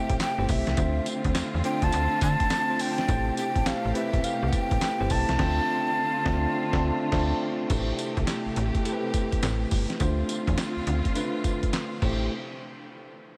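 A breathy, hollow tenor recorder opens the piece over bell-like tine electric piano chords and a lush, bowed string section. The recorder carries the melody with vibrato, a chiff on each crisp attack and a touch of tape echo. Almost at once a snappy FM bass with a metallic, digital bite and a gritty, dusty sampler-style drum kit arrive, bringing a thumpy kick, medium-tuned snare, hi-hat, handclaps, tambourine and crash cymbal in a swung, bouncy new jack swing groove. The drums sit up front with a compressed, tape-warm grain, while the electric piano stays clean and direct and the strings glide underneath with portamento and a smooth top. The harmony rocks between Am7 and Dm7, and the band hits a punchy accent before a brief silent gap at 7.1 seconds; the recorder falls silent at 7.4 seconds, and the piano, strings, bass and drums carry on to roughly 12.3 seconds. A huge ambient reverb soaks the whole mix in a dreamy haze, and the passage is cut from a longer piece.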